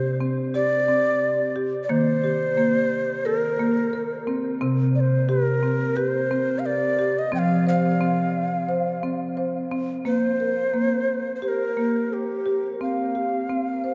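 A lightly swung 4/4 pulse at 88 BPM carries this meditative, hypnotic world piece in G minor, cut from a longer work. A woody rosewood marimba, struck with medium mallets, plays arpeggios from the start, while a close, breathy cedar flute with a hollow tone, tongued chiff and gentle vibrato sings the melody above it. Both sit up front in a vast, echoing cathedral space, and the music moves into a new section at 10.1 seconds.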